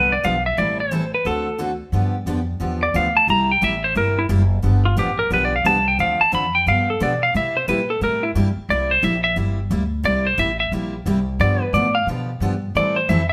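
Playful and swinging, this brief western swing cut moves at a lively clip with a loose eighth-note lilt. A clean lap steel guitar carries the melody up front, its dark, compressed electric tone gliding through slide phrases, and from 1.9 seconds it stretches into a solo that runs to the close. Beneath it, a picked acoustic guitar with a bright, full-bodied jumbo sound fills in the accompaniment, sitting lower in the balance. An upright bass plucks a growly, thumpy line up front, giving the groove a woody bottom. The band plays live together in a moderately reverberant stone room, the chords cycling through bluesy sevenths that keep the dance-hall spirit bouncing.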